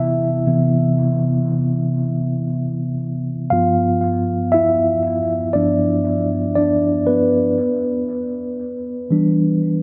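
A mellow, clean tine electric piano plays alone and up front through its built-in speakers, its tape echo soaked in a dreamy plate reverb, as this slow, sensual and longing R&B fragment at 59 BPM in 4/4 moves from Cmaj7 to G7 at 3.5 seconds and on to Em7 at 7.6 seconds.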